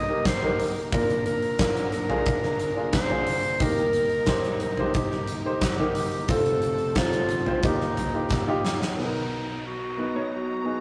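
A warm solo clarinet sings a classical-style melody over clear grand piano and a lush, bowed string section with vibrato in the background, as a huge, up-front arena drum kit with a punchy kick and fat snare joins at 0.3 s to drive this uplifting, hopeful piano pop, fills at 8.3 s and drops out at 9.0 s, when an electronic downlifter enters, all in a stone room with a rough rehearsal-room sound.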